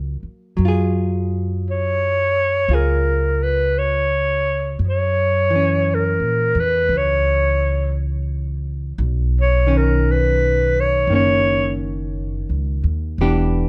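Romantic and tender, this slow jazz ballad excerpt, cut from a longer piece, sways in an easy swing. An upright bass sits up front from the start, plucked pizzicato on steel strings with a woody, growly tone. Alongside it, a clean, dark hollow-body electric guitar picks out the accompaniment, softened by plate reverb. At 1.7 seconds a breathy clarinet takes the solo melody, up front and mellow, with vibrato, scooped notes and a smooth top, carrying on until 11.8 seconds. The harmony drifts through lush add9, sus2 and major-ninth colours before closing on a minor seventh, while light room reverb and the soft grain of cassette tape lend the recording an intimate, vintage feel.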